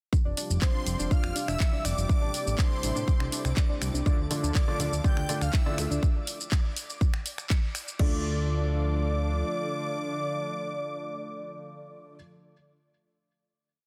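A punchy four-on-the-floor electronic kick at 122 BPM drives this dreamy progressive house piece in D minor, with programmed hi-hat, shaker, finger snaps, handclaps and crash cymbal pumping around it, a fat, detuned analog bass galloping in sixteenths, a dark, round pluck cycling a three-step sequence that drifts against the bar, a lush, warbling unison pad holding chords, a full-bodied octave-layered lead with phaser and vibrato singing hook phrases doubled an octave higher by a smooth supersaw, a faint twinkling granular shimmer, and a felt-muted upright piano adding mellow gated stabs from 4.1 seconds, all in a dense, dry, heavily limited mix, before the drums stop at 8.1 seconds, the bass lingers until 9.4 seconds, and the pad, lead, supersaw and piano hold a final D minor chord until 12.1 seconds.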